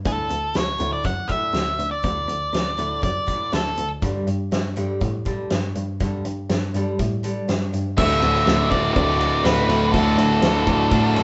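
A bright, full-bodied steel-string acoustic guitar picks D major arpeggios at 121 BPM, joined at once by a veiled, bowed, muted cello with vibrato on the bass line, a roomy indie drum kit with a fat snare and dark cymbals, and a dark octave-fuzz lead guitar melody that drops out at 3.9 seconds as the harmony moves to Gsus2. At 8.0 seconds this restless alternative rock piece erupts into its loud half: the fuzz lead returns up front over a background wall of picked riffs from a crunchy overdriven guitar, a double-tracked fuzz guitar and a high-gain distorted guitar. A smooth tonewheel organ with key click and rotary speaker sits barely audible underneath, and the whole band plays live in one room with moderate reverb for a cathartic surge.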